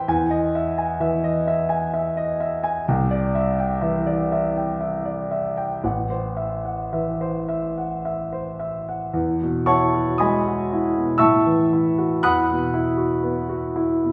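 A clear concert grand piano carries this hazy, luminous impressionist classical fragment alone, its tone open and up front with a deep bass that reaches down to A1 and a treble that extends to G6. The music moves in a flowing three-beat metre with a free, rubato feel, so the pulse breathes rather than marches. Lush chords drift from Emaj7 through Cadd9 to Am6, and a new passage opens at 9.1 seconds on Emaj9 before passing through A6 and settling on Esus2. A wet recital-hall reverb surrounds the playing, and the listener seems to sit further back in the room, giving the harmonies a soft, blurred halo. Cut from a longer piece, it ends at 14.1 seconds.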